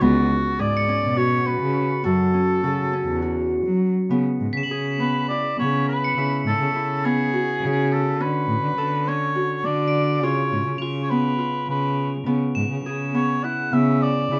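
A mellow, distant oboe carries the melody from F#4 to F#5 with light vibrato in a classical style, up front over a bright, fingerpicked Celtic harp whose ringing arpeggios run from B3 to A4 and a dark, veiled cello, bowed con sordino with portamento, holding the bass close and up front. This urgent, restless contemporary chamber piece moves in 7/8 at 206 BPM counted in eighths, shifting from C#7sus4 and F#m7 into a second passage at 4.1 seconds that passes through C#m7, Dmaj7 and C#7. Quiet, shimmering crotales struck with plastic mallets enter at 0.8 seconds and stop at 13.6 seconds, adding a high, bell-like glint within light reverb in this fragment cut from a longer work.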